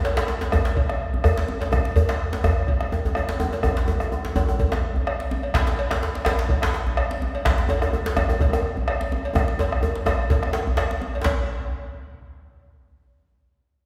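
Earthy and driving, this West African traditional drum ensemble excerpt moves at 126 BPM in 4/4 with a light swing on the sixteenths, cut from a longer piece. Two djembes carry it: one deep, saturated and compressed from the opening, the other tight and cracking with metal rattles, played with soft hands up front, while a round, vintage-toned bombo sits forward and a metallic cowbell rings in the background. A drum fill runs from 9.4 to 11.3 seconds, and the church-like hall lends the whole ensemble a long, wet reverb tail.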